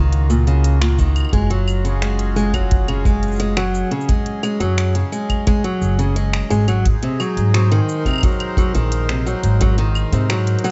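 A small-room sound with its highs rolled off above 7.8 kHz frames this pastoral folktronica piece at 87 BPM, where a boxy parlour steel-string guitar picks delayed arpeggios up front beside a woody, dark pizzicato upright bass, a reedy accordion sustains slow-beating chords through Ebm7, Gbsus2 and Ab7, an overdriven electronic kit adds crisp hi-hat, cabasa, claves and finger snaps with studio reverb, and a punchy, airy kick played with bundle sticks enters at 1.0 seconds and stops at 9.8 seconds.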